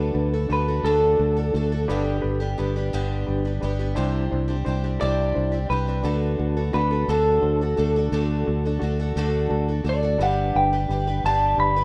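A clean, slightly broken-up electric guitar through a small old amp carries a hopeful, nostalgic solo throughout this 11.8-second rock excerpt in D mixolydian at 58 BPM in 6/8, over a shimmering, octave-doubled twelve-string acoustic, a round, up-front fingered bass and a gritty, barky electric piano with fast tremolo sitting in the background, moving through D, G and Cadd9 in a rough home demo mix with plate reverb on the guitars and piano.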